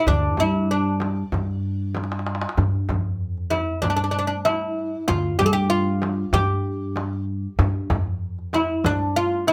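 Lightly reverberant, this short fragment from a longer Turkish makam ensemble piece carries a longing, melancholic mood in a straight 4/4 feel. A woody, fretless oud, plucked with a plectrum on double strings, sits up front with the melody, while a pizzicato upright bass with steel strings anchors the low end. A deep, clay-shelled darbuka with a vintage, band-limited tone, played with soft hands, and a large frame drum set back in a small room keep the pulse, with a drum fill standing out between 1.9 and 2.6 seconds.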